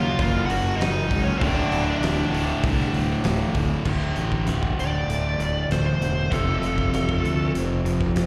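Heard as a live gig through the venue's PA with recital-hall reverb, this restless, anthemic quiet-loud alternative rock excerpt sets a dark, smooth overdriven lead guitar melody over a biting overdriven riff guitar, a double-tracked sludgy guitar and a very quiet thick fuzz guitar (these last two dropping out around 3.9 s), an up-front fuzzed fingered bass, and a big-room rock kit with a fat snare and punchy kick entering at 0.2 s, while a faint, twangy, slightly broken-up guitar through a small old amp adds picked arpeggios from 3.9 s.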